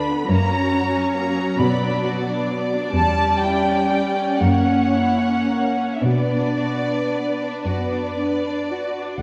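A classical, slow romantic movement for string orchestra in B minor, this brief excerpt cut from a longer piece unfolds in a rubato 6/8 at roughly 35-49 BPM, counted in dotted quarters, with a yearning, solemn mood. A rich, smooth violin section carries the melody up front, sitting between D5 and B5 with an even, lush vibrato. Beneath it, a second violin section adds a bright, intense line ranging from G3 to D5, while the violas supply a rich, smooth accompaniment from D3 to F#4. The cello section anchors the bass from E2 to B2 with a soft attack and expressive vibrato, placed close and present before falling away at 9.0 seconds, just ahead of the upper strings at 9.2 seconds. The harmony moves from F# through Bm, C#dim/E and F#7 before settling back on Bm at 6.0 seconds, all bathed in a wet concert-hall reverb within a dark, warm production that lends the ensemble a spacious, enveloping depth.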